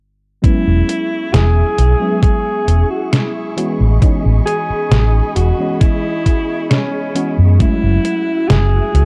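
Vaporwave at a slow 67 BPM in E major, this short, woozy and dreamy excerpt drifts in a dark, warm digital ambience. A distant, roomy alto saxophone carries the melody with vibrato, roughened by 12-bit sampler grit and tape echo. Beneath it, a mellow FM electric piano with quick-attack, decaying notes and a faint noise layer shimmers through phaser, chorus and delay, while a silky string machine holds soft, slow-blooming chords high above, its vintage tone thickened by ensemble chorus and grit. The fingered electric bass sits up front, round and amped with tube saturation, and a tape-softened drum machine adds hi-hat and a medium-tuned snare alongside a thumpy electronic kick that drops out at 7.8 s. The harmony moves from E6 to Amaj9#11 at 3.6 s and settles on F#m7 at 7.6 s.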